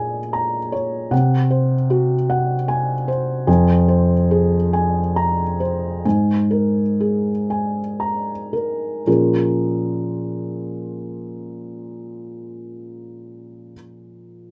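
A felt-muted upright piano plays alone from the start, its soft, dark tone sitting up front with the clatter of its action audible beneath the notes, in this reflective, wistful neoclassical minimalist fragment cut from a longer piece. The rubato 6/8 phrasing drifts through Bbm7, Ab7/C, Fm and Absus2, slowing between 2.3 and 9.1 seconds before a new passage returns to Bbm7 at 9.1 seconds. A moderate studio ambience lends the intimate playing a little air, and the piano stops at 14.5 seconds.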